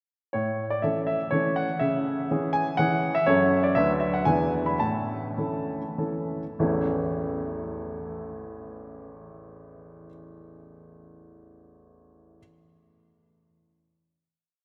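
A clear, polished baby grand piano plays alone in this short classical-period sonatina in A major, sounding present and up front as it carries a graceful, cheerful single-line melody over bass and chords on the beats. The music moves in 3/4 with a rubato feel, its tempo ranging between 96 and 124 BPM, and it is tuned to A4 = 439 Hz. The theme runs from 0.3 to 6.6 seconds, passing through A, C#m, F#m, Bm/D and E7 before returning to A, and it slows between 2.5 and 6.6 seconds. A final chord follows from 6.6 to 10.2 seconds and rings on in the vast, echoing space of a cathedral, whose wet reverb lingers long around every note. The piano spans from A1 up to B5, and this complete little piece ends at 12.4 seconds.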